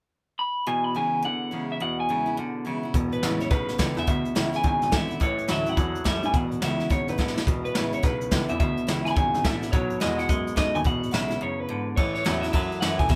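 Rockabilly at a brisk 212 BPM in 4/4 with a swung eighth-note feel, this upbeat, rowdy clip from a longer piece sits in E mixolydian, moving through E, A and B7. An electric guitar through a small old amp carries the melody up front from 0.4 seconds, its tone twangy and slightly broken-up, while a clean, compressed electric guitar with a scooped sound and spring reverb plays a low riff, and a bright, full-bodied picked steel-string acoustic guitar picks out accompaniment in the background. At 2.9 seconds a dark, mellow baby grand piano takes the bass line with a worn, intimate character, short sustain and audible action noise, and an airy, polished jazz kit played with brushes comes in up front with dark cymbals, a medium-tuned snare and a punchy kick. The drums add a fill at 7.2 seconds, and a break arrives just before the change to A at 12.0 seconds. The band plays live together in one room, with moderate studio reverb around them.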